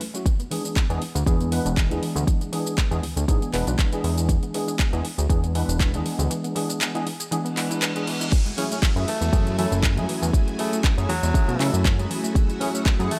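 A lightly swung 4/4 groove at 119 BPM drives this sleek, cosmic nu-disco piece in F# minor: a punchy, up-front electronic kick sits beneath a house kit of metallic hi-hats, shaker, handclaps and crash cymbal, both touched with studio reverb. A fat, nasal analog bass with a sawtooth bite pumps against the kick, while a clean tine electric piano, heard through a combo amp with ensemble chorus, slapback echo and its own sidechain pumping, carries the E7 harmony alongside a very quiet, round analog pluck playing arpeggios. The kick drops out at 6.3 seconds, and from 7.5 seconds a reverse cymbal and downlifter sound in the background, setting up the drop at 8.3 seconds. There the harmony moves to F#m9 and a lush, vintage string machine enters with sustained, chorused chords behind the groove. From 8.6 seconds a raspy, growling tenor saxophone takes the solo melody with vibrato and tape echo, gritty in tone yet smooth on top, before this fragment of a longer track cuts off.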